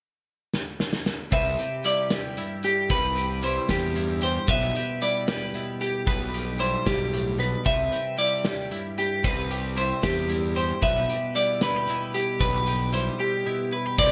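A bright, 1980s-style digital production with moderate plate reverb, small room ambience and a trace of lossy compression artefacts frames this passage, cut from a longer math rock and midwest emo piece in 6/8. The loose indie drum kit comes in first with a fill at 0.5 seconds: an acoustic set in a pumping room, with dark cymbals, a medium-tuned snare and a punchy kick sitting up front. At 1.3 seconds the other parts arrive together, led by a clean electric guitar playing twangy arpeggios high and close. Beneath it, a compressed twelve-string electric guitar with analog chorus fills out the accompaniment, and a fuzz picked electric bass, direct and amped, adds a warm, overdriven low end. The harmony moves between Cmaj7 and G6/B, giving the wistful mood a sunny glow.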